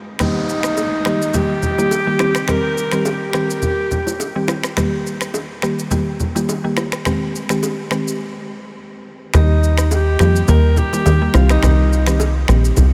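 A breathy alto saxophone with light vibrato and scooped notes carries the melody of this romantic, sunny afrobeats cut, drifting through a diffuse ambient delay before pausing at 4.5 seconds and returning near the close. Beneath it, a woody, mallet-like synth pluck with chorus plays the accompaniment, while electronic finger snaps, rim click and shaker mingle with bright congas and bongos, and a downlifter sits in the background at the opening. After a brief break, a punchy, funky analog bass arrives up front at 9.3 seconds, all set in a dreamy mix soaked in huge reverb.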